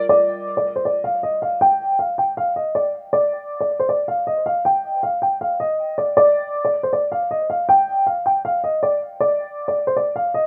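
Hip hop with a brooding, dark mood, set at 158 BPM in 4/4 with a half-time feel, this short excerpt is cut from a longer piece. A worn baby grand piano carries the melody between C5 and G5, sitting up front with long sustain and colored by a low-pass filter and tape echo. The dry, rough home-demo mix keeps the piano present and close.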